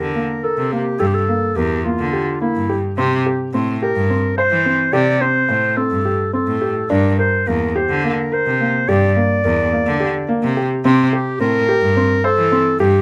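Close, detailed microphones and a light reverb give this contemporary chamber piece an intimate, up-front sound, and the clip is cut from a longer work. It moves at 213 BPM counted in eighths through a straight 7/8 meter in G dorian, tuned to A4 = 439 Hz, with a pensive, hypnotic mood as the harmony alternates between Gm and C5. A solo clarinet carries the melody between E4 and D5 in a classical style, its tone clear with a soft attack and a smooth top. Beneath it, a felt-muted upright piano plays mellow, thin-felted arpeggios between Bb3 and C5. A single bowed cello holds the bass between E2 and E3 with a focused, vibrato-tinged voice. All three parts play together from 0.0 to 13.0 seconds.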